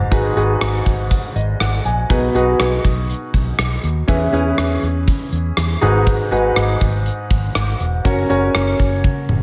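1980s-style pop with a romantic, uplifting mood and a light swing, where an intimate grand piano with subtle chorus and audible action noise carries the accompaniment over a dark, round, foam-muted fingered electric bass and a gated 80s drum kit of tight kick, hi-hat, rim click and toms, the piano adding a fill at 1.1 seconds and the drums a fill at 9.0 seconds as the chords move from G#m7 through B6 and E6 to F#, within a dreamy mix soaked in lush hall reverb.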